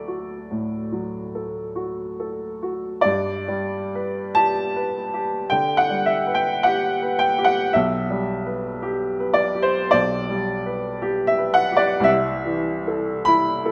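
Classical romantic nocturne for solo piano in G major, dreamy and nostalgic at a slow, rubato 43-57 BPM in 4/4, where a clear, woody upright piano sits up front across a range from B1 to B5, its open tone carried by moderate concert hall reverb as the harmony moves from D to G at 3.1 seconds, on to G/B, and settles on Am/C at 12.1 seconds in this short fragment cut from a longer piece.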